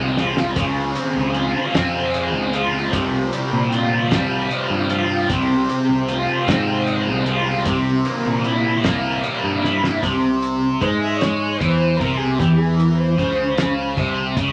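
A large, wet studio reverb surrounds this dark, hypnotic psychedelic rock excerpt in 6/8 at 51 BPM in C phrygian dominant, where a thick, bright, double-tracked fuzz guitar with phaser sits up front playing the riff over an overdriven picked electric bass and a cloth-damped, thuddy drum kit with a fat snare and tight kick. A chamber string section, bowed sul tasto with light vibrato and soft attack, holds sustained chords in the background through chords such as Fmadd9/C, Dbmaj7 and C7sus4. Drum fills open the kit at 0.2 seconds and lead into a string section solo at 10.0 seconds, which resolves on C.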